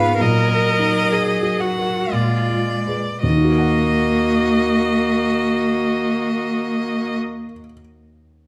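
Solemn and elegiac, this short passage cut from a slow romantic classical movement for piano quartet in Eb minor moves in a rubato 3/4 at 52-70 BPM, slowing through its opening, as a focused violin with vibrato carries the melody over a smooth cello second line and a close viola accompaniment, all three bowed and stopping at 7.2 seconds, while a dark, mellow baby grand with audible action noise supports them and continues alone until 8.5 seconds, moving from Ebm/Bb through Bb7b9 back to Ebm in a wet recital hall reverb.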